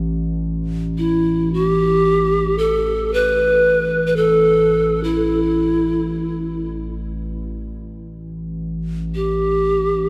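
An airy bamboo pan flute carries the melody from 1.0 s, mellow and up front with a breathy chiff, expressive vibrato and a diffuse ambient delay trailing its notes. Beneath it, a warbling, lo-fi pad holds a dark, nostalgic drone on a low A from the start, its detuned tones shimmering through chorus and slow-blooming sustain. This free-time, meditative world piece floats in a huge, spacious reverb, cut from a longer work.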